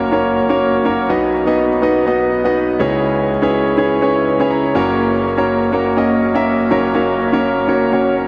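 A clear concert grand piano carries this short pop excerpt on its own, sounding intimate and up front, with deep bass, long sustain and the noise of its action audible beneath the notes. The mood is nostalgic yet uplifting, set in 4/4 with a light swing on the sixteenths. The harmony moves from F# to B and C#m7 before settling back on F#, and the piano adds a brief fill between 4.3 and 5.0 seconds. A diffuse ambient delay trails the piano, while a huge reverb bathes the whole dreamy mix in a long wash. The passage lasts 8.3 seconds and is cut from a longer piece.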